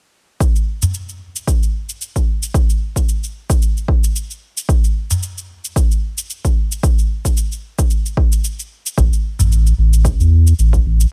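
Organic downtempo with a hypnotic, meditative mood, this short passage is cut from a longer piece and sits on a lightly swung 4/4 groove. A punchy, layered electronic kick drum stands up front from 0.4 seconds, with a produced cabasa sitting much lower in the mix beneath it. Brief strokes from a small acoustic udu, close and dry, land at moments such as 0.8 and 5.1 seconds, giving an earthy, handmade touch against the electronic pulse. Near the end, at 9.0 seconds, a deep, round sine sub bass arrives with a fast attack and sustained, mellow tone, filling out the low end. A digital ambience surrounds the recording, adding a soft sense of space.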